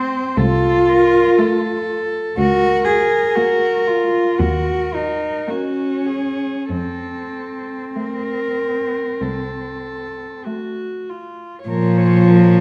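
A reverberant recital-hall sound with a softened, dulled top end frames this short passage cut from a longer classical piece for cello ensemble, yearning and elegiac in a slow, rubato 4/4. A pure, floating cello carries the melody with soft-attack sul tasto bowing, while a dark, woody cello with vibrato sings a close second line and a third cello, up front and smooth, plays the accompaniment. From 0.4 s a bass cello joins with an airy, intimate sul tasto tone beneath the chords, which move from F through Bbm/Db and Eb5 and back to F before settling on Bbm at 11.7 s.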